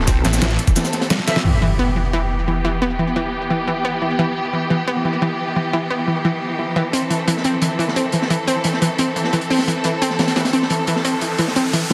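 A bright, detuned analog pluck runs chorused, delayed arpeggios through this dark, mechanical drum and bass excerpt, pumping against sustained, clear bowed strings with vibrato, while a growling distorted saw bass, a knocking electronic kick and a crisp, layered dubstep kit hit only in the opening moments, a distant, roomy brass stab and a gritty, saturated breakbeat kit that returns at 6.9 s add texture, and an electronic impact at 1.4 s and a riser near the close frame the passage inside a lush hall.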